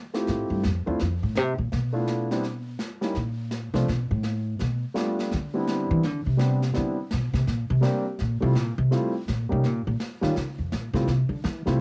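Swinging along in an easy 4/4, this relaxed, sophisticated small-group jazz excerpt from a longer piece features a woody, thumpy upright bass taking the solo throughout, plucked with steel strings and sitting up front from 0.3 seconds. A concert grand piano with a deep bass and natural tone comps in the middle register under plate reverb and cassette-tape color, while a medium-tuned snare played with brushes sits quietly behind, also with a tape tinge. The home cassette recording has light reverb, and the harmony moves through rich extended chords such as Fmaj7, G13 and Bbmaj9 before settling toward F major around 8.2 seconds.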